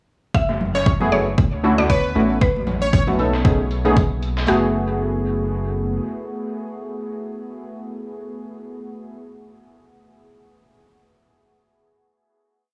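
An overdriven electronic kick sits up front with a dry, punchy four-on-the-floor pulse, driving this smooth, late-night deep house piece in F# minor at 116 BPM with a light 16th-note swing. Beneath it, a round analog bass plays a deep, dark syncopated riff with sidechain pumping. Distant, high-tuned congas and a gritty, pitched-up breakbeat loop, filtered and re-recorded in a large room, sit in the background. A woody, mallet-like FM pluck carries a motif-based melody through chorus and dub echo, joined briefly by a catchy, full-bodied unison lead in short phrases. Detuned analog keys add syncopated, close-voiced chord stabs with a filter sweep, chorus and dub echo over F#m11, Dmaj9, A69 and B13. The drums and bass fall away by 6.0 s, leaving the pluck and keys to hold the final F#m11 chord in light digital reverb until 9.2 s.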